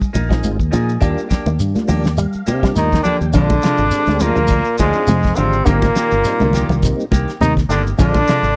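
Driving and funky, this afrobeat excerpt moves at 103 BPM in Bb mixolydian with a light sixteenth-note swing, built on a damped 70s drum kit with a fat snare and tight kick, a round, punchy fingered bass, grainy shekere, bright high-tuned congas in the background, twangy arpeggios from an envelope-filtered guitar, and clean hollow-body stabs with spring reverb and slapback echo. A tonewheel organ with slow rotary speaker and chorus vibrato comps behind them and plays a fill from 1.6 to 3.3 seconds, during which a brilliant trombone takes the melody up front at 2.8 seconds, joined by a raspy, gritty baritone saxophone second line. The dry, close 1970s-style studio sound places it all in a small room, with the chords shifting from Bb7sus4 and Ebmaj7 to Bb7 and a rootless Abmaj9.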